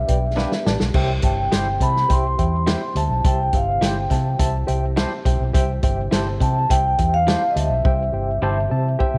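Urgent and driving, this uptempo 1960s-style soul excerpt at 104 BPM in 4/4 sets a ringing, mellow soft-mallet vibraphone melody over a round, foam-muted fingered electric bass and a warm, up-front vintage drum kit with dark cymbals and a punchy kick. A reedy electric piano with fast tremolo accompanies, twangy, slightly broken-up guitar stabs enter at 0.4 s, and a very quiet, lightly overdriven tonewheel organ with key click and slow rotary holds sustained chords. Drum fills arrive at 0.4 s and 7.8 s, and the harmony moves from G to C at 0.9 s, all in a small, lightly reverberant room.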